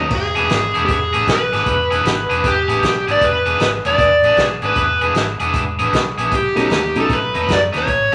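Gritty and soulful, this short cut from a longer electric blues shuffle swings in 4/4. A bright, compressed rhythm guitar with overdrive and spring reverb drives the riff up front, underpinned by a round, foam-muted fingered electric bass with a dark, amped tone. Over them, a smooth, overdriven lead guitar carries the melody in a dusky, picked voice, sitting forward in the mix. A vintage acoustic kit plays in a natural studio room, its punchy kick, medium-tuned snare, hi-hat and crash giving the groove its bounce. The harmony rests on E7 until a move to B7 near 6.3 seconds, and at 6.5 seconds a woody, polished upright piano joins for the closing moments, all set in a wet studio reverb.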